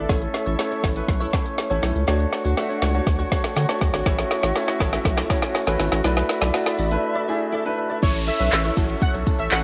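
A deep house drum kit drives this upbeat, euphoric dance-pop excerpt at 121 BPM in a straight 4/4, its deep kick, woody snare, smooth hats, handclaps and crash sitting up front, with a jingly, very quiet tambourine close and dry beneath. A thick, saturated sine sub bass pumps against the kick, as do a clear, intimate baby grand piano with audible action noise and a small flute group holding pure, vibrato-laden chords. A bright, twangy clean electric guitar, recorded direct, picks a riff in the background through analog chorus. The opening 8 seconds form a build-up in A major over A, Dmaj7 and E7sus4 chords, with a drum fill running to 7.0 seconds and short piano fills. The drop lands at 8.0 seconds, where a bold, retro, detuned octave-doubled sawtooth lead enters with chorus and vibrato alongside a background downlifter, all set in light reverb and digital ambience.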